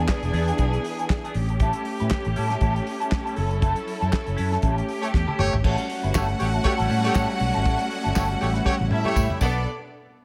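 A clean, hollow-bodied electric guitar with wah and spring reverb opens this driving, danceable disco excerpt at 119 BPM, alongside smooth, even bowed strings holding sustained chords and a round, dark fingered electric bass sitting up front. A damped 70s drum kit with a tight kick, medium-tuned snare, hi-hat, handclaps, toms and crash cymbal enters at 0.1 seconds, its dry, rolled-off sound carrying a light sixteenth-note swing. The harmony moves through E7, A7 and F#m7, and the band hits a shared accent before a drum fill leads into the second section. A smooth-topped horn section with light vibrato adds stabs from 5.0 seconds, and a lush, focused second string line with rich vibrato comes in at 5.6 seconds. A jingly, bright tambourine sits in the background from 6.1 seconds, and another drum fill closes the passage on a Bm7 chord, all set in light reverb and studio ambience.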